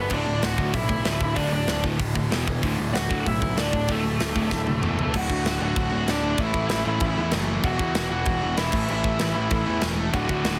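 A straight, driving 4/4 beat powers this upbeat, rebellious punk rock clip, cut from a longer piece. Up front sits a tight drum kit in an airy big room, with bright cymbals, a tight kick, a medium-tuned snare, hi-hat, crash and toms. A bluesy, distorted lead guitar carries the melody throughout over a bed of background riff guitars: a crunchy overdriven one, a brighter double-tracked one and a hollow-body semi-hollow one. A growly fuzz bass, picked and recorded both direct and amped, digs in beneath them as the harmony moves from D to E5 and later A5 power chords. A drum fill at 4.5 seconds launches the second half, where the crunchy guitar drops out until it returns at 10.1 seconds. Light reverb and heavy multiband compression give the mix a squeezed, radio-like sound.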